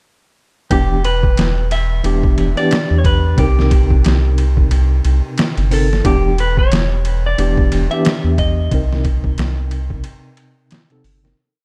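An overdriven, pitched-down sampler drum kit sits up front in this brooding, cinematic trip hop piece, its looped breakbeat with edits built on a thumpy kick, a medium-tuned snare, hi-hat and ride over a swung groove. A round, nasal analog bass plays a deep syncopated riff, while a worn, slightly out-of-tune tine electric piano adds syncopated chord stabs in spread voicings through a combo amp with medium tremolo and tape echo, alternating between Em7 and Cm7. A dark, clean picked electric guitar wanders through a free melody coloured by 12-bit sampler grit and tape echo in a dry, dark production, before the whole piece fades out from 7.8 seconds to its end at 11.4 seconds.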